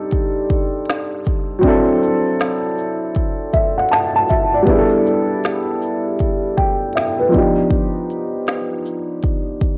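A swung 4/4 groove of finger snaps, shaker, crisp hi-hat, deep kick and woody snare from an up-front organic electronic drum kit, roughened by vintage 12-bit sampler grit, carries this mellow, nostalgic lo-fi hip hop excerpt, while a dark, slightly detuned upright piano with cassette tape colouring plays accompaniment through Cm6, D9, G69 and G7b13, adding a fill from 3.2 to 4.7 seconds, set in light reverb with the homespun sound of a cassette recording.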